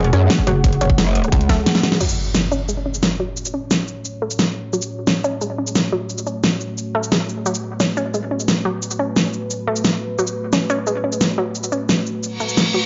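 Tense and mechanical, this dark technical drum and bass passage opens with an aggressive low end: a growling, formant-filtered growl bass with tube saturation and a metallic, FM-edged wobble bass with distortion sit up front over a tight, layered electronic kick. Those two basses and the kick drop away by 1.7 seconds, and a drum fill leads into an up-front electronic impact at 2.0 seconds. From there, the dubstep drum kit drives on with a huge snare, metallic hi-hats, shaker and crash cymbals, tape-tinged and carrying studio reverb. Beneath the drums, a deep, moody analog pad of detuned sawtooth chords on F# minor breathes with sidechain pumping and chorus, while a round, nasal, wave-folded analog pluck spins bright arpeggios through digital delay. Both synths move under long filter sweeps until a reverse cymbal rises at 12.3 seconds, cutting off this portion of a longer track with light reverb and a dark, rolled-off top end.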